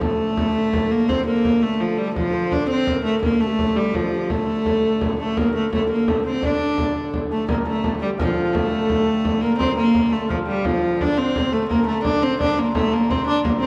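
A medieval dance in D minor opens with its full ensemble at once: a rich, fretted viola da gamba carries the melody up front, bowed with a light vibrato and soft attack, while a very quiet hurdy-gurdy holds a nasal, wheel-bowed drone on D3 beneath it. A bass recorder in the background adds a second line with a reedy, chiffy, tongued tone, and a deep frame drum struck with hard hands sounds distant, as if in a large room. The music moves in 6/8 at 113 dotted-quarter beats per minute, gradually speeding up across this excerpt and giving it an ancient, driving character. A shimmering hammered dulcimer rings out briefly at the start, then drops away until 7.3 seconds, when it returns with a second line high above the gamba. The piece states its main section twice, the repeat beginning at 7.5 seconds. A recital hall reverb and a dark production surround the ensemble, with the gamba's smooth, floating top staying clearly in front.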